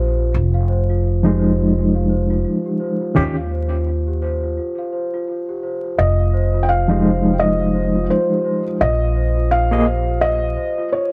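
A swung 16th-note groove at 85 BPM in 4/4 sets this dark, melancholic trip hop fragment in F minor, moving from Fm7 to Eb and later to Bb5, with a break at 4.6 seconds. A woody pizzicato upright bass sits up front under a reedy, barky overdriven electric piano with fast tremolo, while a bell-like large celesta rings out delicate arpeggios through tape echo. At 6.0 seconds a felt-muted upright piano takes the melody, intimate and mellow with audible action noise and 12-bit sampler grit, all wrapped in a small room, cassette warble, pitch drift and vinyl crackle.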